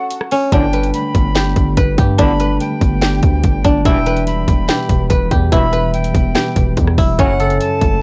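A dry, gritty cassette-tape sound in a small room frames this brooding, melancholic excerpt of half-time trap hip hop at 144 BPM, where a silvery, fingerpicked guzheng melody with tape echo leads over a breathy flute line and an up-front trap kit with hard-clipped kick, sharp snare and metallic hats, while a mellow tine electric piano, background brass stabs and a heavy distorted 808-style bass enter after a brief break, moving from F#m through Gadd9 and Em.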